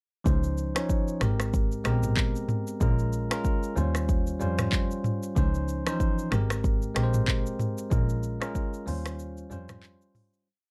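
A bell-like tine electric piano opens this joyful, sunny afrobeats piece at 0.2 s, pushing bright drop-2 chords with grace notes through a Dbmaj9, Abmaj9, Bbm7, Eb13 cycle at 94 BPM with a swung sixteenth feel, while a dark, woody bowed double bass plays a bouncy, syncopated line with vibrato, and an up-front electronic drum kit adds a deep kick, crisp hi-hats, shaker, handclaps, toms and syncopated rim clicks layered with finger snaps, all in a dry, warm mix that fades out from 7.9 s into a break at 9.2 s.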